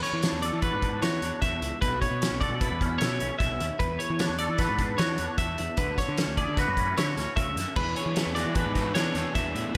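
Intricate and playful, this short cut of math rock and midwest emo moves in an odd 5/4 metre with a straight feel. A bright, compressed twelve-string electric guitar sits up front with clean picked arpeggios, while a twangy electric guitar supplies the accompaniment, thickened by ensemble chorus and slapback echo. A fuzz-laden, punchy picked bass with overdrive enters at 0.1 s, and a loose indie drum kit with a fat snare, dark cymbals and a rolled-off top drives things from a roomy distance. At 7.8 s an overdriven, double-tracked semi-hollow guitar slips in behind the others with a riff carrying its own slapback echo. The harmony circles through E9sus4, Bm11 and Dmaj7, and a concert hall reverb lends the mix a big arena sound.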